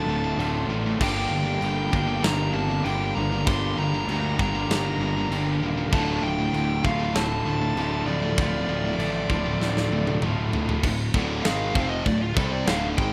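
A rough home demo mix with light reverb carries this heavy, epic heavy metal excerpt in D minor at 98 BPM, where a dark high-gain lead guitar sings the melody over a dark, bluesy background second line that stops at 10.2 seconds, an up-front, bright overdriven riff guitar, a double-tracked high-gain riff guitar set further back, a growly fuzz bass, and a gritty big-room drum kit with china and crash cymbals that enters at 0.4 seconds, moving through Dm and Gm in half time until a drum fill at 9.6 seconds leads to a lead guitar solo from 10.8 seconds.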